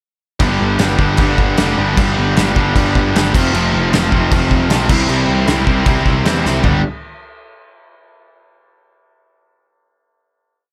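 Upbeat and energetic, this short punk rock piece charges along at 154 BPM in G mixolydian, with two tight distorted guitars driving eighth-note power chords and barre chords over a growly, fuzz-soaked picked bass that pushes its own eighth notes. A loose indie drum kit with a punchy kick, dark cymbals and a gritty, saturated room sound drives a fast punk groove, snapping into a fill at 6.4 s. The riff moves through G, F and C before landing on a final G5 chord at 6.6 s, all in a dry, up-front mix.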